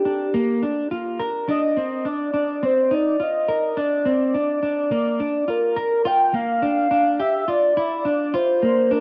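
Soaked in a wet studio reverb and carrying the softened grain of a home cassette recording, this short excerpt from a longer dream pop piece feels melancholic and haunting. At 105 BPM in a straight 4/4, a velvety synth lead carries the melody up front between G4 and G5, its sawtooth and triangle tones wave-folded, with a soft attack, long sustain, vibrato and chorus, plus cassette tape colour and analog delay. Beside it, a dark electric guitar at the edge of break-up plays fingered arpeggios between Bb3 and Bb4, compressed and close, bathed in lush chorus, tape and analog delay. Both parts play throughout, moving through Gm7, Fsus4 and Bbadd9 before returning to Gm7 as a new section begins at 6.1 seconds. The piece is tuned slightly low, to A4 = 439 Hz.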